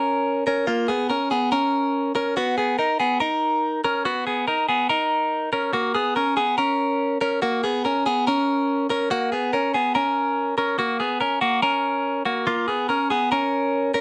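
A clean electric guitar opens this short indie pop excerpt on its own, recorded direct and sitting up front with a bright, twangy, scooped tone. The mood is youthful and bright, moving at 142 BPM in a straight 4/4 in F# major. Picked and compressed, the guitar stays in a compact range from A#3 to A#4, colored by a phaser and a slapback echo. The harmony moves from A#m to B, settles on F# at 5.7 seconds, and returns to A#m at 12.5 seconds before the fragment breaks off at 14.0 seconds. The sound is dry and close, like a 1970s studio, with only a light touch of reverb.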